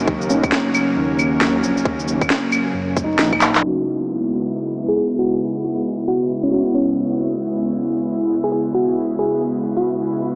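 Nocturnal and wistful, this future garage excerpt drifts in a dreamy haze soaked in reverb, with vinyl crackle and a muffled, small-speaker tone. An airy, breathy pad holds sustained chords up front, shaped by chorus and sidechain pumping. A felt-muted upright piano sits in the background, soft and boxy, its accompaniment darkened by a low-pass filter and trailed by analog delay. A swelling detuned saw bass, menacing and thickened by tube saturation, pumps beneath a tight electronic kick and a swung kit of shaker, claves, woody snare and handclaps, both drum parts tape-toned and re-recorded in a small room. After a drum fill at 3.4 s, the bass stops at 3.6 s as the harmony moves from D#m7 to C#m7 and a filter sweep begins. From 4.9 s a bell-like FM electric piano carries the melody, sparkling and warbling through chorus, cassette tape coloring and tape echo.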